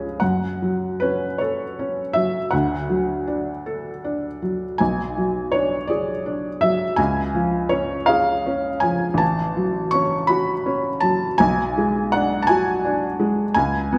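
Bathed in the wet bloom of a recital hall with a 1.8-second reverb tail, this yearning, mournful romantic nocturne in F# minor features a solo felt-muted upright piano, intimate and up front with a thin felt tone and short sustain, drifting through F#m, D, G#m7b5/B and C# in a rubato 12/8 at around 54 dotted-quarter beats per minute over a 14-second fragment of a longer piece.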